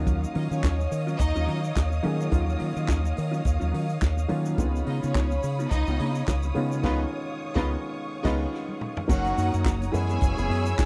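A dry, close 1970s-style studio sound frames this joyful, danceable disco passage at 106 BPM in 4/4 with a swung sixteenth-note feel, moving from D#m9 and C#9 to F#6. A punchy, up-front vintage drum kit with handclaps, toms and crash cymbal drives alongside a fingered electric bass through an envelope filter. A dark baby grand piano with audible action noise, a mellow electric guitar with harmonic tremolo in the background, a grainy tube shaker and two lush bowed string sections fill out the texture: one with a soft attack sustaining high chords, the other clear and focused carrying a second line. At 6.8 s a distant, roomy horn section enters with stabs as the band hits accents, and a drum fill at 8.5 s leads into a new section at 9.1 s.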